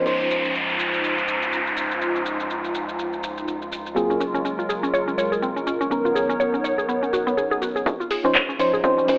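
A lo-fi, cassette-and-telephone-colored snippet of sunny, relaxed deep house in Db major at 123 BPM with a swung 16th feel, where a hollow, flute-like pad with pumping ensemble chorus and a mellow, warbling FM electric piano playing filtered, delayed stabs (swept from 7.9 s) rest over a round, deep analog bass in the background and a punchy analog drum machine with crash, handclaps, hi-hat and shaker, while an up-front downlifter and riser, a woody, mallet-like synth pluck arpeggiating from 4.0 s, and an electronic kick at 7.9 s carry the harmony through Dbmaj9, Gbmaj9 and Cbmaj9 and back to Dbmaj9 for a closing build-up, all in a moderate plate reverb.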